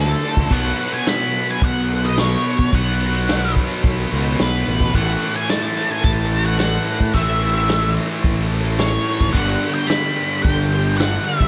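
An octave-fuzz lead guitar with a dark tone and slapback echo opens this sunny, driving classic rock passage at 109 BPM in a straight 4/4, over a growly, overdriven fingered bass held up front and two bright, distorted electric guitars riffing in the background, one of them tight and touched with the same slapback echo. A vintage acoustic drum kit joins at 0.2 seconds, with a punchy kick, a medium-tuned snare and dark crash cymbals sitting forward in a small, lightly reverberant room. The chords move from D5 to B5, A5 and G in this brief section cut from a longer piece.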